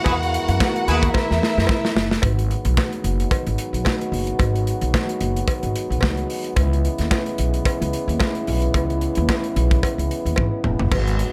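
A swung disco groove at 110 BPM in G# minor drives this sultry, glamorous excerpt, with a punchy modern drum kit of bright cymbals, handclaps and toms up front, a dry metallic cowbell in the background, and a woody, thumpy pizzicato upright bass. A lush, distant string section with portamento and a roomy pop-style horn section open the piece over an E chord. The horn stabs drop out at 1.1 seconds, and the strings' second line follows at 2.2 seconds after a drum fill, as the harmony shifts to G#m7 and then C#m7 at 6.6 seconds. Throughout, a dark, tight classical French horn section holds sustained chords beneath, all set in light reverb.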